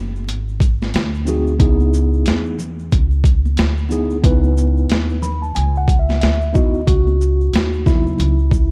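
A woody, growly pizzicato upright bass with tube saturation opens this smoky, mellow jazz-hop excerpt at 91 BPM in C# minor, soon joined by bright congas and tube shaker in the background and a gritty, overdriven boom bap sampler-style kit with a thumpy kick and a swung 16th-note feel, before a clean, mellow tine electric piano enters at 1.3 s, plays a fill from 4.9 s and takes a solo at 6.9 s as the harmony moves from G#7 to C#m7 and C#m11, the mix wrapped in light reverb, vinyl crackle and the warbly pitch drift of worn cassette tape.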